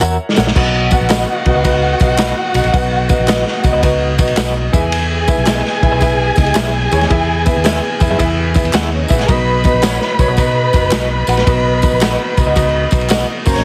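Danceable and uplifting, this excerpt of uptempo 1960s-style soul moves at 110 BPM in 4/4 with a swung eighth-note feel in B major. A brief drum fill over an F#7 chord opens it, and the vintage drum kit enters at 0.4 seconds, sitting up front with a punchy kick and muffled, dark cymbals. The muted fingered electric bass is round and foam-muted, while a woody, slightly detuned upright piano carries the accompaniment with its action noise audible. Close, dry handclaps and tambourine fill in the percussion from the very start. In the background, an electric guitar through a small old amp plays slightly broken-up stabs with tremolo and plate reverb. From 0.6 seconds, a lush studio violin section adds a bowed second line with vibrato and portamento. The harmony moves from B to E at 4.7 seconds and back to B, all under light reverb and a heavily compressed, radio-like finish.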